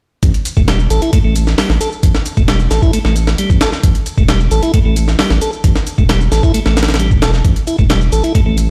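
A gritty, compressed sampler-style breakbeat kit with a thumpy kick, high-tuned snare and hi-hat sits up front with a small-room ambience, driving this energetic, swaggering 133 BPM breaks clip alongside a thick, saturated sine sub bass, while a faint analog shaker sits in the background and a piping, scooped tonewheel organ riff with key click, a stopped rotary speaker, 12-bit sampler grit and digital delay enters at 0.6 s, all played back on a big sound system in a bare stone room.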